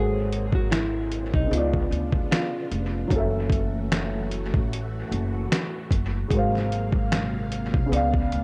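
Lo-fi hip hop with a reflective, melancholic swing, where a dark hollow-body jazz guitar sings a brief dub-echoed melody over the first 2.7 seconds while a mellow felt-muted upright piano, phased cello string-machine chords, a woody pizzicato upright bass and a gritty, overdriven sampler drum kit with finger snaps, thumpy kick and fat snare (entering at 0.3 seconds) carry this echo-heavy, cassette-hued excerpt through jazzy chords like G#9 and C#7b9 in a moderate spring reverb.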